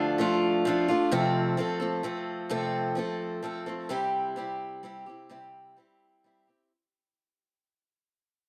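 Set in a light reverb, this short rock fragment cut from a longer piece has a reflective, wistful mood at 129 BPM in 3/4, carried by a lone picked acoustic archtop guitar with a boxy, up-front tone and a slapback echo, moving from D minor to F and then C before it fades out from 1.1 seconds to 6.7 seconds.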